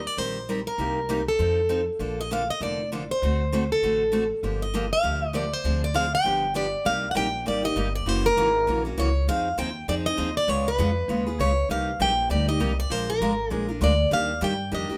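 Swinging and fiery, this fragment of acoustic string swing in the jazz manouche style races along at 198 BPM in G minor, moving to C minor at 6.9 seconds, with an up-front, boxy plugged-in archtop guitar carrying the picked melody on fresh strings, a bright steel-string acoustic guitar supplying the picked accompaniment, and a woody, thumpy upright bass with dark gut strings anchoring the low end, all captured as a band playing live together in one room with moderate studio reverb.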